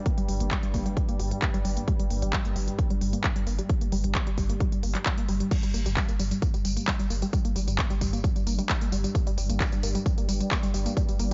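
Set in light reverb and digital ambience with a dark, capped top end, this hypnotic, intense peak-time techno cut runs at 132 BPM in G minor, held on a G minor chord throughout its 11.3 seconds. A heavy, layered electronic kick sits up front over a techno kit of smooth hi-hats, crash cymbal, handclaps and tambourine, with sidechain pumping on the hats, cymbals and percussion, while an overdriven, low-pass-filtered sub bass holds a thick, deep G with its own pumping. A tight, detuned sawtooth-and-square synth riff with chorus and delay drives through a filter sweep, over a moody, slow-blooming sawtooth-and-sine pad drone with chorus, built-in reverb and pumping.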